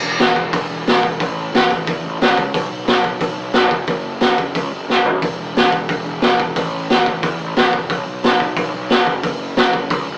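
A bright, growly picked electric bass drenched in overdriven fuzz opens this rowdy, energetic punk rock excerpt at 179 BPM in straight 4/4, joined at 0.2 s by a raw garage drum kit whose punchy kick, medium-tuned snare, hi-hat and toms sound saturated, gritty and up front with a rolled-off top, breaking into a quick fill at 4.9 s, in a dry, rough rehearsal-room recording with an AM radio tone.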